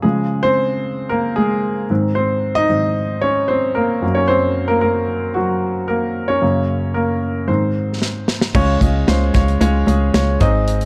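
A clear, up-front concert grand piano with deep bass opens this uplifting, anthemic piano-driven pop excerpt on its own, until a punchy acoustic studio drum kit with a medium-tuned snare and rolled-off top breaks in with a fill at 8.0 seconds and a foam-muted fingered electric bass joins at 8.5 seconds, the whole sitting in a dark production with light studio reverb.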